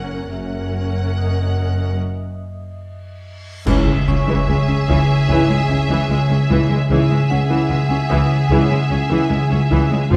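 The marimba, struck with medium hard mallets, carries a dark, smooth riff at the front of this mysterious, ominous stretch of suspense film score, cut from a longer piece and moving at 73 BPM in 4/4 with uneven beats in C# dorian. Around it, a rich viola section bows an expressive accompaniment with vibrato and portamento, while a clear, distant violin section holds a smooth, even melody high above. Lush cellos and warm double basses, both bowed with vibrato and set at a distance, with the cellos sitting in the background, anchor the low end, and a metallic, ringing vibraphone with fast motor vibrato adds faint texture. After a break from 2.0 seconds, a huge, dark reverse cymbal rises at 3.5 seconds into a full accent at 3.7 seconds, where clash cymbals and concert bass drum hit close and dark, and the harmony shifts from F# to C# minor. From there a second, lush violin line joins, along with roomy French horns and very quiet, mellow trombones holding sustained chords in classical style. 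A wet scoring stage reverb gives the ensemble a spacious, cinematic depth.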